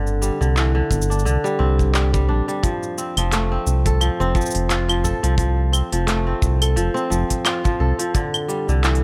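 A lightly swung 87 BPM 4/4 groove of claves, handclaps, crisp hi-hat and shaker from a tape-warm organic electronic kit, joined at 0.9 s by a tight acoustic kick in a pumping small room, drives this pastoral folktronica excerpt in F major, where a ringing, fingerpicked kora plays up-front arpeggios through delay over a deep, round analog bass with a dark, ring-modulated edge, moving from Csus2 to F and on to Cadd9 in a light studio reverb.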